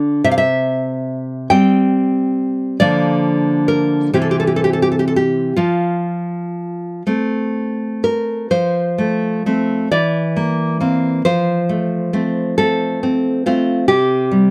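In a 6/8 taken with free rubato, this slow romantic piece for solo classical guitar moves at about 40-48 BPM in dotted quarters, its wistful, melancholic mood settling in F major. The nylon-string guitar is fingerpicked and sits up front, its fresh strings and warm voice spanning a range from C3 to G5. The harmony drifts from C through Bb/D and back to C before resolving to F around 5.6 seconds. A second section begins at 8.5 seconds, passing through C7/E and F before closing on a bare C5 at 13.9 seconds. Close, detailed microphones and light reverb keep the sound intimate, and the instrument is tuned slightly low to A4 = 438 Hz in this brief cut from a longer piece.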